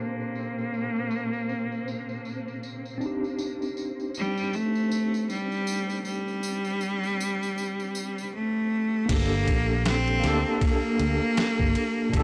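A dry, gritty recording with transformer saturation and a low-pass filter frames this dark, hypnotic trip hop piece in G minor at 79 BPM, with a swung sixteenth-note feel. A biting, bowed solo cello carries the melody up front with vibrato, 12-bit sampler grit and dub echo, over a clean tine electric piano with tremolo, tape echo and a filter sweep, moving between Gmadd9 and Cmadd9. A flickering granular texture hovers in the background and a compressed tambourine plays until 8.3 seconds; at 9.1 seconds a round, punchy fingered bass and a pitched-down boom bap sampler kit with a thumpy kick, snare, crash and ride come in.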